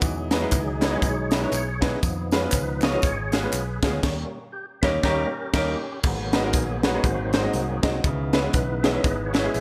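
A bright 1980s-style digital sheen and lush hall reverb frame this fervent, soulful uptempo gospel excerpt at 120 BPM in G# minor with a swung feel, where a lightly overdriven tonewheel organ with fast rotary speaker and chorus vibrato solos over a brilliant, up-front baby grand piano, a round fingered electric bass, and a punchy, gritty fusion drum kit with a high-tuned snare and gated reverb, while close, dry tambourine and group handclaps sit in the background until 3.9 seconds and the band hits an accent from 4.0 to 6.0 seconds.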